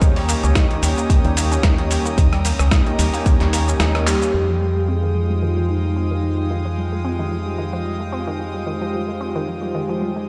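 A punchy, up-front fingered electric bass with an envelope filter anchors this sensual, groovy nu-disco excerpt, its dark, round tone pumping under a swung beat from a layered electronic kick, which stops at 3.4 seconds, and a gritty, dusty soul sampler-style kit of snare, handclaps, hi-hat, rim click and shaker that plays until 4.3 seconds. Around it, a smooth, detuned analog pad with chorus and delay, a floating sul tasto violin section and a bright, wave-folded unison pluck arpeggio with tape echo fill out the harmony, moving from Eb7 to Fm9. At 4.1 seconds a drum fill and band accent usher in a soft, full-bodied octave-layered synth lead with phaser, vibrato and tape echo, all set in a stone-room reverb as if played on a big sound system in a bare room.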